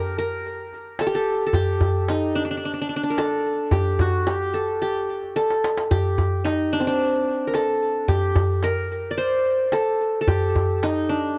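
Arabic maqam ensemble music with a longing, soulful mood, cut from a longer piece in a straight 4/4 feel. A plectrum-plucked qanun carries the melody up front, its triple strings sounding bright-edged and warm through a dub echo, while a large, deep metal-shell darbuka enters at 0.7 seconds with crisp, hard-handed strokes and a short fill around 5.4 seconds. The echo-heavy mix sits in light reverb and small room ambience with a cassette tape character.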